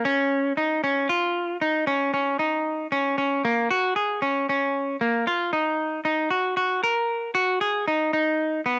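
Set in 7/4 at 115 BPM with a straight feel, this brief cut from a longer progressive instrumental in E-flat minor feels brooding yet driving. A lone semi-hollow electric guitar plays throughout, bright and clean with a picked, hollow-body tone, sitting up front and colored by a cassette tape character between Bb3 and Bb4. The home cassette recording carries light reverb and a digital ambience, and the music moves into a new section at 3.7 seconds.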